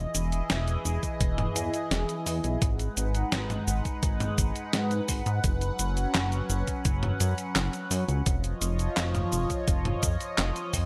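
A swirling, vintage analog pad and a chorused synth bass open this nostalgic, nocturnal synthwave excerpt together, both pumping to a sidechain at a relaxed 85 BPM in a straight 4/4 feel, in G# minor and tuned slightly sharp to A4 = 441 Hz. The bright, sawtooth-based pad sits up front with a slow attack, its evolving, warbling sustained chords colored by phaser and chorus as they move through Emaj7, G#m7, F#sus4 and C#add9/E#. Beneath it, the glossy, mellow bass blends pulse, sawtooth and sine tones with pulse-width modulation, a filter sweep and a fast attack, holding up front in a low register. A clean 12-bit drum machine enters at 0.1 seconds with a fat snare, hi-hat, handclaps, cabasa and toms, and a thumpy, sampler-style electronic kick follows at 1.0 seconds; both drum parts carry a tape-warm character from being re-recorded in a small room. Light reverb gives the mix a soft sense of space.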